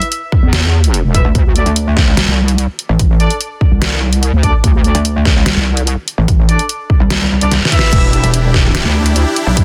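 Heavy and aggressive, this half-time wobble dubstep cut runs at 146 BPM, opening with distant, roomy brass ensemble stabs trailed by dub echo over a dubstep kit with a deep snare, crash and hi-hat, and a punchy electronic kick joining at 0.3 seconds. Two up-front wobble basses carry the low end, one square-wave and saturated with chorus and overdrive, the other metallic and FM-toned with distortion, chorus and overdrive, entering at 1.2 seconds. After a drum fill and a very quiet reverse cymbal, huge, lush supersaw chords arrive at 7.9 seconds on an Em7, pumping against the sidechain in a dense, heavily limited mix with little reverb.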